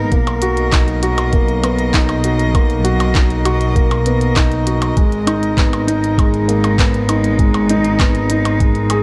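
Light, small-room reverb gives this short piano and strings electronica piece a close, intimate sound, and its mood is hopeful and tender at 99 BPM in a straight 4/4 in B major. A soft, felt-muted upright piano sits up front with a mellow, intimate riff between G#3 and G#4, trailed by tape echo. Beneath it, a studio double bass section plays bowed bass notes with a reedy, gut-string tone, light vibrato and a period-style character, while a distant chamber string quartet holds clear, intense sustained chords with vibrato; both string parts carry sidechain pumping. An up-front electronic kick drum enters at 0.1 seconds with a compressed, pitched-down, muffled thump and a tape-warm, sampler-style weight. A minimal click drum kit joins at the same moment with clicky hi-hats, handclaps and percussion blips, re-recorded in a small room. The harmony moves from Bmaj7 to G#madd9 at 5.0 seconds, and the fragment is cut from a longer piece.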